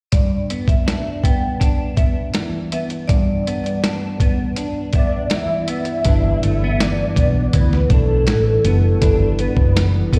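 Laid-back, hazy indie and bedroom pop at 81 BPM in G major, cut from a longer piece and heard as if through a venue's PA with recital-hall reverb: a compressed, muffled, pitched-down sampler-style drum kit with a thumpy kick sits up front beside a clean, picked semi-hollow guitar with analog chorus and vibrato, while a dark, ringing hard-mallet vibraphone with slapback and tape echo plays a second line until 5.8 seconds, a full, round octave-layered synth lead carries the melody from 5.0 seconds through phaser and ensemble chorus, and a foam-muted, amped fingered bass and a cassette-tinged tine electric piano in the background join at around 6 seconds.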